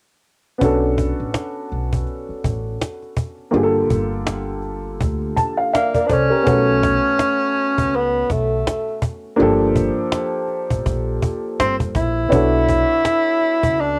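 At 0.6 seconds a dark, mellow upright piano opens the excerpt, slightly detuned and up front, with pizzicato upright bass and a snappy cajon entering alongside it. This is a cool, smoky jazz-hop groove in B minor at 82 BPM, in 4/4 with a gentle swing on the sixteenths. The piano's woody chords move from Bm9 to Gm9, and it plays a short fill at 5.0 seconds before the harmony settles onto Bsus2. The bass is woody, warm and acoustic on steel strings, while the cajon, with its snares, sits close and dry. At 5.8 seconds a breathy tenor saxophone takes the solo melody in a jazz style, using soft attacks, scooped notes and light vibrato, and it sounds roomy and distant even as it sits prominently in the mix. Light reverb and the cassette-tape character of a home recording, heard on the piano, cajon and sax, give the piece its smoky, intimate feel.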